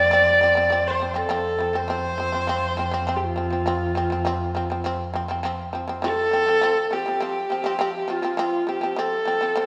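A straight 4/4 pulse at 102 BPM drives this short cut from a longer Mongolian folk piece in F gong mode, giving it a vast, galloping mood. Up front, a single horsehead fiddle carries the melody from F4 to D5 with a husky, nasal, biting tone, light vibrato and portamento. Beside it, a plucked fretless shamisen plays buzzing, percussive arpeggios between F3 and C4, mellow yet powerful. Beneath them, one muted cello holds a veiled, dark drone on F2 with a soft attack, ending at 6.1 seconds as the music moves into a new section at 6.0 seconds. A concert hall reverb with a 2.3-second decay surrounds the ensemble, and the fiddle and shamisen continue together until the cut ends at 9.7 seconds.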